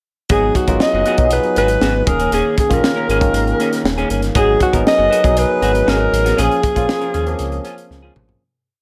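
A light reverb and small-room ambience frame this short, polished 1980s jazz-funk pop piece, which moves at 118 BPM in a straight 4/4 with a slick, urban mood in G# dorian. A warm alto saxophone carries the motif-based melody in sentence-like phrases, its subtone, vibrato and scooped notes giving a smooth jazz-style top line. Beneath it, a barky tine electric piano played through a combo amp pushes drop-2 chord voicings with grace notes, dressed in lush chorus, while a dark, clean semi-hollow electric guitar plays a fingered sixteenth-note rhythm riff with analog chorus. A deep, full sine sub bass with an octave drives an agile, syncopated line with chromatic approach notes, and a crisp fusion drum kit with a high-tuned snare and tight kick holds a sixteenth-note studio groove in a pumping room sound. The chords move from G#m7 to D#7sus4 and back before reaching A#m7 at 6.4 seconds, where the track begins to fade, the saxophone drops out at 7.9 seconds, and a drum fill closes it out.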